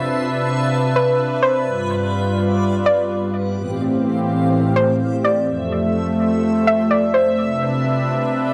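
Hip hop in a half-time feel, this brief excerpt has a spacious, ethereal mood built on a chord progression that moves from Cmaj9 through G7, Am7 and Fmaj7 before returning to Cmaj9 at 7.4 seconds. An analog pad sits up front for the whole passage, its detuned sawtooth tone smooth and slow to bloom as it holds sustained chords with a chorus effect. Beneath it, a reversed, swelling texture adds a dreamy, granular shimmer, bright in character, with a long release and its own built-in reverb. A soft, round pluck carries the melody from 1.0 to 7.4 seconds, its mellow, decaying notes colored by chorus and tape echo, with a hint of ring modulation and a noise layer lending subtle grain. The overall sound is dry and gritty, with only a light touch of room reverb.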